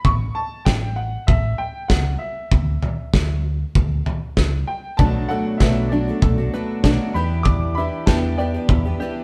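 A clear, woody, slightly detuned upright piano carries the melody over a round, punchy hollow-body electric bass and a loose, up-front indie drum kit with a tight kick in a stone room, until at 5.0 seconds a full-bodied fingerpicked acoustic guitar, a shimmering octave-doubled twelve-string and a plunky banjo in the background join to build this bittersweet, yearning indie folk excerpt.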